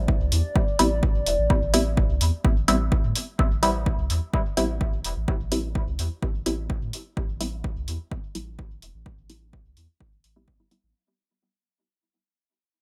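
A dark, moody analog pad holds sustained chords with a slow attack, chorus, phaser and sidechain pumping, over a soft, round dub sub bass, opening this meditative, deep dub techno excerpt in A minor at 127 BPM, as the harmony moves from Am7 to Am at 3.4 s, where the pad stops. A punchy, tape-warm electronic kick sits up front with a small-room electronic hi-hat, while a muted, mellow sawtooth chord stab with a filter pluck, chorus, phaser and dub echo carries a filter sweep from 0.8 s onward. The bright 1980s-style digital production adds light reverb and digital ambience, and the sound fades out from 3.4 s to 10.9 s.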